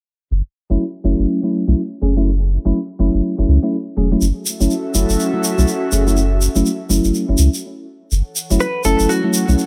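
Light reverb and digital ambience frame this late-night deep house piece in F# minor at 123 BPM with a swung 16th feel, where a round sine sub bass and dark, chorused, phased FM electric piano stabs sit over F#m7 until an airy, detuned pad with 12-bit sampler grit and a grainy, saturated tube shaker join at 4.2 seconds, and after a brief stop a clean, picked hollow-body jazz guitar with digital delay carries a short melody from 8.6 seconds.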